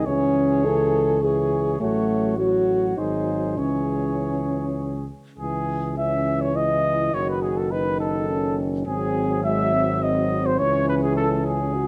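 In a 3/4 at 103 BPM, this heroic, solemn brass quintet passage in C# minor, cut from a longer piece, sets a mellow cornet melody with a soft attack over a dark trumpet second line in the background, with warm French horn and background euphonium accompaniment and an up-front tuba bass, each played with vibrato and captured by close, detailed microphones in light reverb as the harmony moves from C#m through G#7 back to C#m twice.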